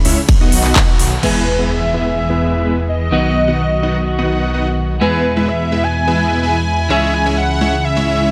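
Festival progressive house at 127 BPM in E major, this short cut from a longer track feels anthemic and euphoric, opening on a drop where a dense, compressed supersaw riff and a dark, bowed string section in the background both pump against the sidechain under a low-pass filter. A big-room dance drum kit with crisp hats, handclaps, crash and ride cymbals plays only until 1.3 seconds, joined briefly by a punchy, up-front electronic kick, with a band accent landing at 0.8 seconds. Beneath them a thick, saturated detuned saw bass with chorus holds the low end from 0.1 seconds onward. At 1.2 seconds an electronic impact marks the second section, where an airy, dreamy lead with chorus and delay carries the melody up front, while a clean, picked electric guitar adds pumping accompaniment. Filter sweeps move across the supersaw and the strings throughout this passage as the chords move from B to E to C#m, all sitting in light digital reverb.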